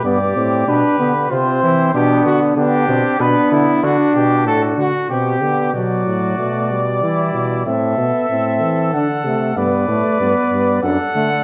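Steeped in the reverb of a resonant recital hall and given a dark production, this solemn, contemplative excerpt of a classical brass canzona in 3/4 sets a mellow, distant cornet melody with vibrato up front, a clear trumpet second line with light vibrato and a smooth top, a close-miked warm trombone accompaniment with soft attacks, and a bright bass trombone holding the bass up front, all four voicing a chord progression from G through Bm, Em and Am to a closing D/F#.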